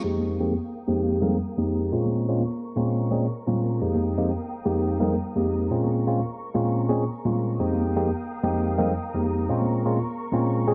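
Filtered disco house with a sensual, nostalgic mood, cut from a longer piece, built on a loop of Fm11 and Bbm7 chords under a filter sweep that runs through the whole clip. Up front, a clean tine electric piano plays accompaniment through a phaser and low-pass filter, with a built-in-speaker character. A distant, lush string section bowed with vibrato holds sustained chords with vintage 12-bit sampler grit, while acoustic tambourine and congas sit band-limited in the background, all in light reverb.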